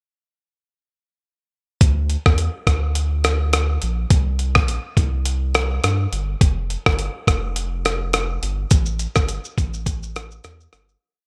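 Dry, bright 1980s-style digital production frames this short, wistful and mellow indie pop and bedroom pop piece at 104 BPM with a light sixteenth-note swing, where from 1.8 seconds a gritty, compressed sampler-style soul drum kit re-recorded in a large room plays a soft rhythm-box pattern of thumpy kick, rim click, hi-hat and shaker up front, alongside a deep, round analog bass blending square and sine tones with a moving notch on a sustained, melodic line with slides, before the piece fades out from 8.7 to 11.0 seconds.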